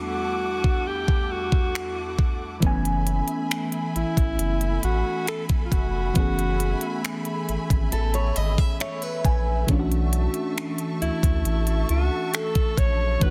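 A straight 4/4 trap kit of knocking kick, crisp hats and finger snaps, its snare softly clipped, enters at 0.6 s in this slow, sensual and longing 68 BPM contemporary R&B excerpt, where a smooth, vibrato-laced alto saxophone carries the melody through delay over a mellow, warbling FM electric piano with chorus, lush bowed symphonic strings with sidechain pumping, a deep, round analog bass arriving at 2.6 s, and a bright picked steel-string acoustic guitar adding brief delayed arpeggios from 7.9 s, set in a small room on a dense, heavily limited master.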